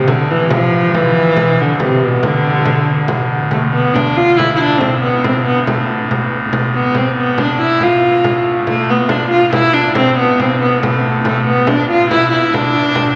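Bathed in a long, wet cathedral reverb, this excerpt of a medieval dance in D dorian moves at a driving 140 BPM in 3/4 with an ancient, straight-ahead feel. Up front, a single bowed, fretted viola da gamba carries the melody with a woody, ringing tone, soft attack and light vibrato. Beneath it, a hollow clarinet stop on pipe organ holds a low drone, and a small, bright frame drum, close and dry, joins at 0.1 s before the tune moves into a new passage at 3.5 s.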